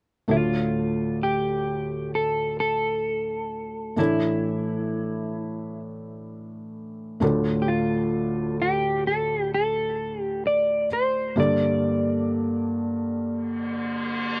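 Dry and close, with only a light touch of reverb, this recording has the intimate feel of a 1970s studio session, caught as a short stretch of a longer pop piece. A felt-muted upright piano carries the accompaniment across a span reaching from the low register into the middle, its soft, mellow tone sitting up front with the audible clicks and thumps of its action. Over it, a clean, fingered electric guitar plays a dark melody in a narrow middle range, colored by a subtle chorus. The harmony moves through Dm, Asus4, back to Dm and on to Gmadd9, giving the slow, straight pulse a heartbroken, longing mood. At 13.5 seconds an electronic reverse cymbal appears, running until the close at 14.4 seconds.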